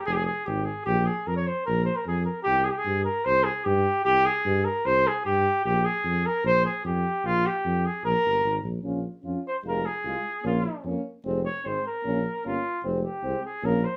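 A mellow flugelhorn carries the melody in this restless, bittersweet Balkan brass band piece, cut from a longer performance, at 150 BPM in a straight 2/4. It sits up front with light vibrato and a distant, roomy classical tone, over a close-miked tuba bass that is also up front. At 8.8 s the flugelhorn takes a solo over a dark, soft-attack euphonium with light vibrato in the background, joined at 8.9 s by a warm French horn, as the band, playing live in one room with wet studio ambience, moves between Bbm and Fm.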